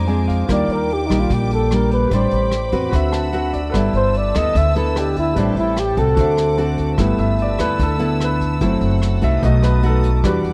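Bossa nova at 148 BPM in G major, romantic and sophisticated, this cut from a longer piece opens with a dark, breathy flugelhorn solo with a soft attack, light vibrato and tape echo, set over fingerpicked nylon-string guitar, a woody, up-front pizzicato upright bass, and a vintage brush kit with a punchy kick, rim clicks and a rolled-off top. A clear, natural grand piano adds fills at 0.0, 2.9 and 6.4 seconds, while a floating string section holds pure, bowed sul tasto chords over changes such as Ebmaj7, Am11, D13 and G69. Once the flugelhorn finishes at 6.9 seconds, the piano takes its own solo from 7.0 seconds over G69, F#m7b5 and B7, all within a dry, close 1970s-style studio sound.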